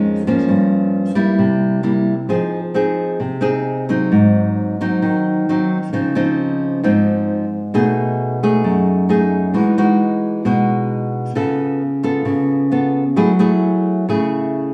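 A straight 4/4 bossa nova pulse at 132 BPM carries this sunny, relaxed cut from a longer piece, played by a single fingerpicked nylon-string guitar from 0.0 to 14.7 s. The guitar sits up front with a full-bodied classical tone, its fresh strings ringing clearly, and an occasional finger squeak adds a close, human touch. Its range runs from F2 to A4, and the harmony moves through rich, shifting colours such as Gm7b5, C7, Dbmaj9 and Cb6 before settling into E major at 9.5 s with an Emaj9. From there it passes through C#aug7 and comes to rest on F#m9. A wet stone-room reverb surrounds the instrument, giving the intimate performance a live, resonant sense of space.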